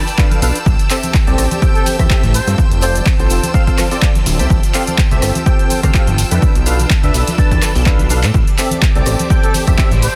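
A shimmering vintage string machine, a hollow, percussive organ stab riff with dub echo and focused chamber strings open this energetic, soulful piano house excerpt in A minor at 125 BPM, soon joined by an overdriven, punchy kick up front, an analog drum machine of handclaps, hi-hat, rim click and shaker, soft-handed tambourine and congas in the background, and a fat, detuned sawtooth bass pumping under sidechain, while a veiled cup-muted trumpet drifts in from a distance at 1.8 s and again at 9.4 s, with a drum fill at 7.9 s, all within a dense, heavily limited master.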